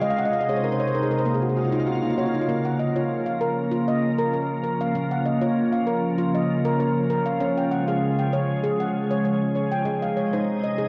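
A handpan and a calm, full-bodied organ-like pad open this short cut from a longer meditative world piece together, the handpan's ringing, nitrided-steel arpeggios struck with sharp finger strokes and trailed by analog delay, playing a fill through the first 2.5 seconds over the pad's pure sine and triangle tones touched by ring modulation and ensemble chorus. At a steady 98 BPM in Bb minor, the hypnotic, gentle music moves from Ab to Bbm at 1.3 seconds, later to Db and back to Ab, with the pad's sustained chords carrying a slow attack and long release while both bright parts sit up front. A moderate spring reverb and the soft grain of a home cassette recording give the sound an intimate, warm glow.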